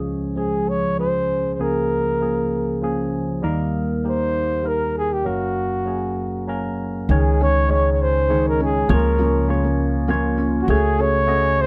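Nostalgic and intimate, this short folk excerpt moves at 98 BPM in a straight 3/4, set in D-flat major and tuned slightly sharp to A4 = 441 Hz. A barky tine electric piano opens the accompaniment, bright and lightly overdriven through a combo amp with a phaser coloring its chords, while a breathy flugelhorn takes the melody almost at once, dark and whispered with light vibrato, a soft attack and a smooth top. The harmony travels from Db through Bbm7/Db and Eb to Gb before a second section begins at 7.1 seconds on Dbsus2. There a felt-muted upright piano adds mellow arpeggios with audible action noise, and a woody, thumpy pizzicato upright bass on gut strings holds a low Db, both playing through to the end at 11.7 seconds. The closing Bbm/Db and Gbmadd9/Db chords lend a bittersweet tint, and the close, detailed miking with little reverb keeps the bass, flugelhorn and electric piano up front.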